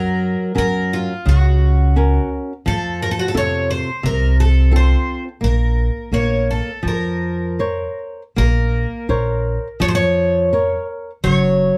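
Mournful and longing, this fado-style ballad moves at 85 BPM in 4/4 with a rubato feel in Bb harmonic minor, a short cut from a longer piece that passes through Gb, F and Bbmadd9 before closing on Gb5 at 11.2 seconds. A picked twelve-string acoustic guitar carries the melody with a shimmering, octave-doubled tone, while a fingerpicked flamenco guitar supplies the accompaniment, both sitting up front from the start. Beneath them, a pizzicato upright bass with steel strings adds a woody, growly low end in a moderate small room ambience.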